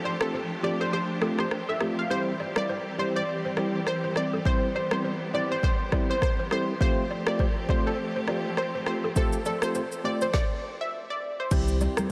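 A dreamy, reverb-soaked mix carries this sunny, joyful afrobeats excerpt in C major at 102 BPM, with a swung 16th-note feel and chords moving between Fadd9 and C. An up-front, sawtooth analog pluck with chorus and tape echo carries the melody over bell-like tine electric piano drenched in lush chorus, an intense bowed string section holding sustained chords until 10.3 seconds, and a woody, buzzing balafon riff sitting in the background with its own tape echo. An electronic afro-pop kit with a deep kick, woody snare, rim clicks, shaker and crash drives the groove, and after the stop a boomy, sine-like 808-style bass and soft-handed congas enter at 11.5 seconds.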